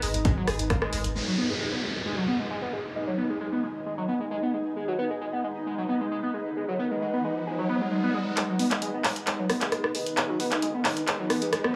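A gritty, screaming overdriven synth lead carries this intense, hypnotic excerpt of driving peak-time techno at 133 BPM in G# minor, its detuned riff colored by phaser, tube saturation, digital delay, vibrato and sidechain pumping as a filter sweep moves through it. A thick saturated sub bass and a tape-toned analog drum machine with handclaps, hi-hat and rim click open the piece but drop out after about 1.1 s, while a punchy electronic kick enters at 0.3 s and falls away by 0.8 s. Beneath them a blurred, evolving granular cloud pad pumps throughout, with a downlifter and a riser that builds from 5.5 s, until the drum machine returns at 8.4 s with a fill for the build-up, all set in a stone-like room reverb.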